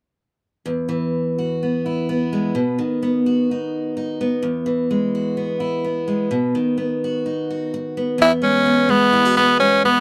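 Sunny and danceable, this brief highlife passage opens on a bright, picked steel-string acoustic guitar picking its way through Esus2, B and Eadd9 with audible finger squeak, before a gritty, forceful tenor saxophone with light vibrato takes an up-front solo melody at 8.2 seconds, all captured in a dry, close 1970s-style studio sound with light reverb.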